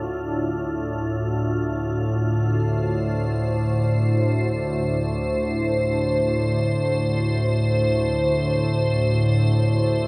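Soaked in a huge, dreamy reverb with an 8.3-second tail, this dark ambient drone excerpt in free time feels vast and ominous, as a calm, detuned organ-like drone thickened by ensemble chorus holds low on D minor while an icy, crystalline glass pad with an airy noise layer and chorus hangs bright and up front above it across all 10.1 seconds.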